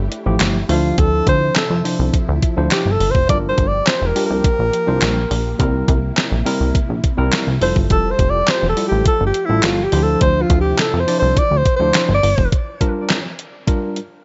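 Early-eighties boogie funk at 104 BPM in G dorian, this slick, funky excerpt is cut from a longer piece and moves through Fmaj9, Dm9, Gm7 and C7 chords. A breathy, whispered alto saxophone takes the solo up front from 0.7 s, its intimate jazz-style phrasing carried on tape echo. Beneath it, a plucky analog bass gives punchy, fast-attack notes with a decaying filter pluck, while a clean 12-bit digital drum machine supplies a thumpy kick, fat snare, hi-hat and handclaps with gated reverb, sounding re-recorded in a small room. A worn, slightly out-of-tune tine electric piano plays accompaniment through its built-in speakers, and a very quiet, silky string machine holds mellow sustained chords with ensemble chorus and a moving notch. The bass, strings and saxophone stop at 12.5 s, leaving the drums and electric piano to carry a brief closing passage, and the whole mix sits dry and dark, with little reverb and nothing above 7.8 kHz.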